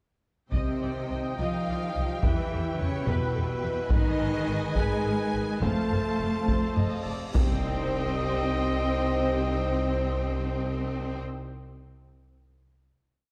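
A taiko ensemble struck with hard sticks drives this dark, dramatic piece of epic orchestral film music with a big drum ostinato, sounding as if it were played in a small room. The pulse moves at 71 BPM in 6/8, in C dorian, over chords of Cm, Em, Abm and F. Warm, expressive violins with a soft attack carry the melody, while a lush, distant studio violin section doubles the tune in unison and at the octave. Focused, close cellos also double the tune at the octave, and up-front double basses supply a driving bass ostinato and sustained low notes. Intense violas keep a rhythmic ostinato in the background, mellow French horns and very quiet trombones hold sustained chords, a clear solo trumpet adds stabs, and a faint string section fills in sustained harmony. A huge, dark cymbal swell rises at 6.8 seconds into a low impact at 7.3 seconds, where the music settles on a final Cm chord, and the taiko stops at 8.4 seconds, all within a moderate concert-hall reverb and a dark production.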